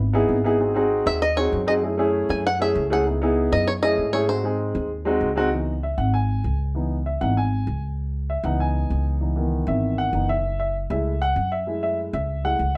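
Caught live by a band in one room, with a moderate studio reverb adding some air, this fiery, sophisticated stretch of Afro-Cuban jazz moves in a straight four. Up front, a twangy, percussive bluegrass banjo played with fingerpicks carries the melody until 5.2 seconds, over a woody, thumpy pizzicato upright bass and a concert grand piano with deep bass comping through a rootless C#m7 and changes among G#7, F#m9 and C#m7. From 5.5 seconds the piano takes a solo that runs to the close of the cut, with the bass still underneath.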